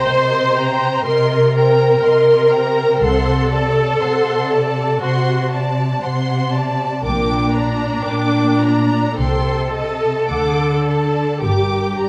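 Serene and lyrical, this slow romantic movement for string orchestra drifts at around 52-62 BPM in 4/4, its rubato phrasing letting the pulse breathe freely. A violin section carries the melody high in its range with a focused, vibrato-laden tone, while a second violin line beneath it sounds soft in attack and expressive. The violas sit up front in the blend, their rich, even accompaniment forming the heart of the texture. Cellos anchor the bass from the opening with a close, expressive sound, and the double basses join at 3.0 seconds, adding a woody depth to the low end. The harmony moves from Cm7 through D7/C and Gm/Bb toward a cadence that settles on Gm, all set in a wet scoring-stage reverb that gives the strings a soft halo. This passage is drawn from a longer piece.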